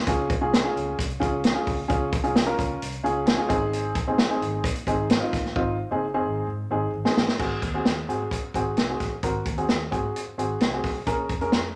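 A roomy studio reverb surrounds this short cut from a longer uptempo 1960s-style soul piece at 131 BPM, joyful and danceable in a straight 4/4. A dark, woody upright piano sits up front, slightly detuned with audible action noise, playing accompaniment through Db, Ab, Ab7 and Bbm7 and adding a fill around 2.8 seconds. Alongside it, a round, foam-muted fingered electric bass and a punchy, rolled-off vintage drum kit drive the groove, with crash, hi-hat, kick and snare, and the drums play a fill from 5.6 to 7.4 seconds before the music moves into a new section.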